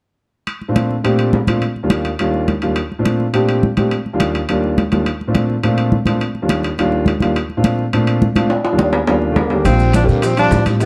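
This lively, danceable Afro-Cuban jazz excerpt rides a brisk, straight 4/4 pulse, opening with congas and ringing, metal-shelled timbales that set the groove from the start, the congas bright and thin-skinned with hard, damped hands sitting close and dry in the background. A smooth concert grand piano with a deep bass sits up front as accompaniment, its vintage tone cycling between Bbmaj7 and Ebmaj7 chords. A drum fill from 8.5 s leads into a shift at 9.7 s, just after a subtone tenor saxophone with scooped notes and a dark trombone with a soft attack and light vibrato arrive together at 9.3 s, the sax carrying the melody from a distant, roomy place while the trombone plays a second line in the background. A woody, thumpy pizzicato upright bass joins up front, and tight, high-tuned bongos, raspy guiro and grainy maracas fill in quietly as the harmony settles on a Bb6/9 chord. The dark production is framed by a moderate studio reverb, and the piece is cut from a longer performance.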